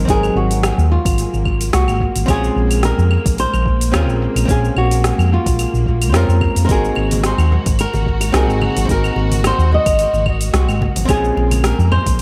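A relaxed sunset chillout groove at 109 BPM in 4/4, with a gentle 16th-note swing carried by a soft electronic kick and a smooth R&B kit of metallic hats, claves, rim click and shaker that splashes into dub echo, both drum parts joining at 0.1 seconds and sounding re-recorded in a large room. Underneath, a round, up-front hollow-body bass, fingered and amped, sits low between Ab1 and F2 as the loudest voice in the mix. A dark, fingerpicked flamenco guitar carries the melody, its finger squeaks audible through a tape echo, while a clean, picked archtop guitar adds accompaniment with its own tape echo. A lush, close string section holds sustained, vibrato-rich chords, and the harmony rocks between Ab9 and Bbm9. Very quiet, ringing bongos and congas enter at 7.0 seconds, adding live-room colour to this echo-heavy excerpt cut from a longer piece.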